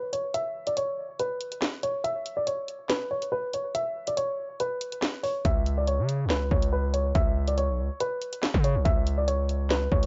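A dry, gritty recording with its top end rolled off gives this menacing, ominous drill excerpt a close, hardware-worn feel at 141 BPM in a half-time 4/4 pulse. A woody, slightly detuned upright piano carries the melody through a low-pass filter and analog delay, while an electronic drill kit of knocking kick, sharp snare, bright hi-hats and handclaps sits up front. At 5.4 seconds a distorted, saturated 808-style bass with a noise layer and fast attack drops in under a Bsus2 chord, moving to C#m at 8.9 seconds.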